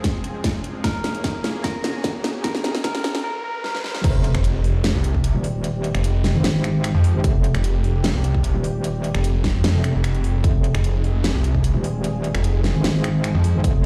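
Heavy wobble dubstep in F minor at 150 BPM with a half-time feel, this menacing, chaotic passage opens with a build-up where a twangy clean electric guitar picks a filtered, delayed melody over a lush supersaw pad pumping behind it, while a punchy electronic kick, a dubstep kit with a huge snare, metallic hats, finger snaps and crash, and a background riser drive toward a short break at 3.2 seconds. At 4.0 seconds the drop hits with an impact, bringing in an up-front metallic wobble bass with chorus and overdrive and, at 4.3 seconds, a snarling, growling distorted saw bass with a resonant moving notch, both aggressive beneath the Fmadd9 pad. The mix sits in a large studio reverb, sounding like it was played on a big sound system in a bare room.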